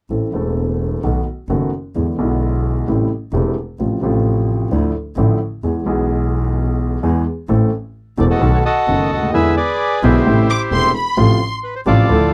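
Melancholic and sultry, this tango excerpt in A minor moves at 130 BPM in 4/4 with a rubato feel, its woody upright piano and a biting, bowed double bass carrying the harmony from the start through a chord progression that includes Am, B7, E7 and Dmadd9. At 8.2 seconds a reedy, vintage-toned bandoneon takes up the melody, and a smooth, bowed violin section adds a brief second line high above from 10.5 to 11.5 seconds. The sound is dry and close in the manner of a 1970s studio, touched with light reverb, with every part placed up front.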